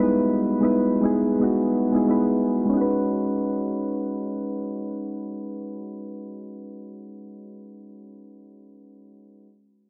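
This soulful amapiano fragment in B major drifts in free time, carried entirely by soft, electric-piano-like synth keys played solo from 0.0 to 9.5 s. The round, full-bodied keys sit up front with chorus and a low-pass filter, and a filter sweep runs through the first 2.7 s over an Emaj7 before the harmony settles on B69 at 2.7 s. A lush hall reverb and dark, warm production give the fragment a hazy glow.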